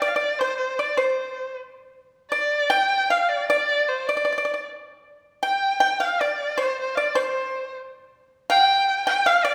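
Graceful and pastoral, this short passage of traditional Chinese chamber music is cut from a longer piece and moves at 78 BPM in 2/4 with a free, rubato feel. A single bowed erhu carries the melody from 0.0 to 9.5 s, its rich tone shaped by expressive vibrato and sliding portamento between notes. Beside it, a plucked pipa played with fingerpicks supplies a second line across the same stretch, sounding bright, dry and percussive. Both instruments sit up front and share the register from C5 to G5. A moderate reverb with a 1.8-second decay gives the duo the resonant air of a church or concert hall.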